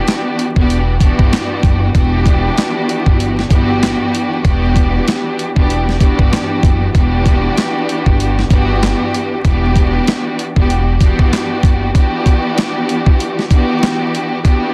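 Boom-bap hip hop with a gritty, dark swing, cut from a longer piece, where a lush, bowed symphonic string section with vibrato, colored by cassette tape, filtering and plate reverb, rests on a single Em7 chord over an up-front, pitched-down sampler drum kit with a thumpy kick, high-tuned snare, hi-hat and handclaps, while a woody pizzicato upright bass enters at 0.6 seconds and drops out at 11.9 seconds, the whole mix set in a dense, heavily limited master flecked with vinyl crackle.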